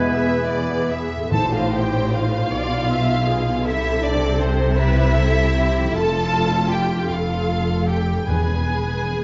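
A slow, rubato 6/8 pulse at 52 BPM carries this melancholic, solemn romantic orchestral passage in A minor, which opens on a brief chord from clarinet, oboe, airy flute, bassoon, mellow French horns, trombones and trumpet that lasts only about the first second. Lush, vibrato-rich violins sing the melody over a second violin line, expressive violas with portamento, cellos in the background, up-front bowed double basses and a ringing, fingerpicked harp. Timpani struck with medium mallets and a dark tam-tam enter at 1.3 seconds, and the timpani return at 8.3 seconds, all set in a dark, moderately reverberant scoring-stage sound.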